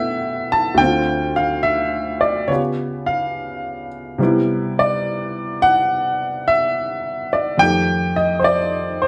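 Solo jazz at a relaxed, swinging 71 BPM in 4/4, played on an intimate upright piano with a woody, slightly detuned character and audible action noise, set up front in a large studio's moderate reverb. The piano ranges from D2 to A5 across this short excerpt, cut from a longer piece, moving through Bm7, Dm7, C#7#11 and Cmaj7 before reaching F9 at 7.6 seconds.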